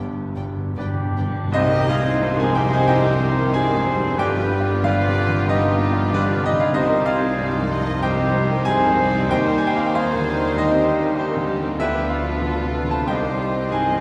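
Opening on a soft-mallet timpani fill beneath a clear, up-front baby grand piano melody, with two floating sul tasto violin sections, a rich viola section, cello and double bass sections, a mellow tuba and a brief vintage clarinet note, this tragic, passionate romantic movement in C minor, rubato in 4/4 at 70-100 BPM, reaches an ensemble accent at 1.5 s, where quiet trumpet stabs, sustained trombone and French horn chords and a barely audible tam-tam join the silvery flute and cor anglais lines that enter at 0.8 s, the piano's long sustain blooming in a reverberant recital hall.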